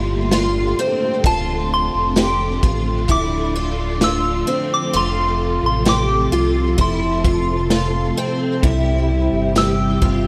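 A lush, vintage string machine holds sustained chords under up-front arpeggios from a bright, shimmering twelve-string acoustic guitar with ensemble chorus and tape echo, while a deep sine sub bass anchors the low end and a raw, gritty garage drum kit with dark cymbals and tambourine sits in the background from 0.3 seconds. This blissful, floating dream pop fragment moves at 65 BPM in F major, passing from Gmadd9 through Dm7 and F to C, as a soft, pure FM bell melody with chorus, phaser and tape echo drifts in at 1.3 seconds. At 8.6 seconds a slightly broken-up electric guitar with tremolo joins in the background, all set in light reverb and studio ambience.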